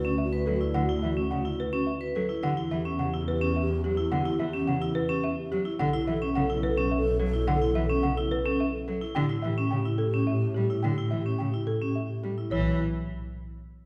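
Classical minimalist pattern music in 3/4 at 107 BPM, hypnotic and propulsive, cut from a longer piece and heard from further back in a reverberant recital hall. A woody folk marimba carries the melody while a bright, ringing vibraphone with hard mallets spins arpeggios and a mellow, hollow alto flute adds a second line with vibrato; a bowed double bass section holds the bass, and a rich solo cello joins at 0.5 s with smooth accompaniment. The harmony moves from D6/9 through Em(add9) and B7sus2 to an A7 missing its third before the chords fall away at 12.5 s.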